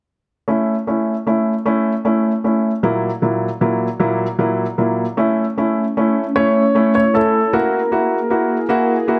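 A clear, woody upright piano sits up front in plate reverb, carrying heartfelt, swaying accompaniment in this short 6/8 pop excerpt in A major at 51 BPM, moving between A and F#7/A#, before a warbling, detuned sawtooth pad with subtle chorus rises in the background at 5.2 seconds and an intimate concert grand with audible action noise and long sustain plays a brief melody from 6.4 seconds.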